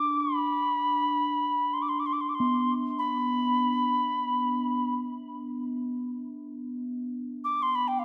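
A clay alto ocarina carries the melody in this short, free-time fragment of meditative world music, its pure, bright, reedy tone sitting up front with vibrato, a crisp attack and a chiff at the start of its notes. An analog delay trails the ocarina's line, which moves between F5 and D6 across the full 8 seconds and lends it a haunting, distant quality. Beneath it, a bronze singing bowl rings low, between B3 and D4, played with a suede striker so its metallic voice blooms full and slowly beating. The bowl is close-miked and dry, sitting up front but more softly than the ocarina. A moderate plate reverb, with a 2.8 s decay, and an echo-heavy mix give the whole passage a spacious, contemplative stillness, as if lifted from a longer piece.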